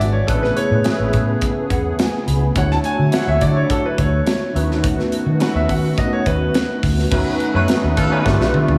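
Upbeat and glossy, this short cut from a longer piece of polished 1980s jazz-funk pop moves at 105 BPM in a straight 4/4, with chords moving from Amaj9 through Dmaj9 and B7/D# before a turn to G7 near the end. A clear, natural grand piano carries the melody as a solo from the start until 6.8 seconds, lit by slapback echo and digital delay. Beneath it, a bright, barky tine electric piano sits up front through a combo amp with light overdrive, ensemble chorus and slapback echo, adding a fill between 1.4 and 2.6 seconds. A smooth, detuned sawtooth pad holds soft-attacked chords in the background, while a dark, foam-muted fingered bass gives a round, punchy low end and an acoustic studio kit with a tight kick and medium-tuned snare drives the groove. At 7.5 seconds a distant horn section with light vibrato and octave doubling adds a brief second line, and a drum fill closes the passage, all set in a lush hall reverb with a big arena sound.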